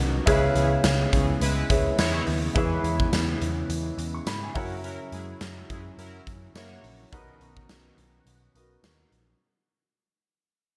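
A clear, polished baby grand piano with a lush chorus opens this glossy, nostalgic 1980s-style pop passage, alongside a bold, detuned sawtooth pad holding sustained chords and a dark, round, foam-muted picked electric bass. From 0.3 seconds a punchy, up-front rock drum kit with hi-hat, snare and tambourine joins in, along with fat, fast-attack analog synth brass stabs that drop out at 6.8 seconds, while the piano adds a brief fill around 4.0 seconds over a C#m7, E6, F#7 and Bmaj7 progression. The bright digital production sits in a wet hall reverb, and the whole passage fades out across its 9.4 seconds.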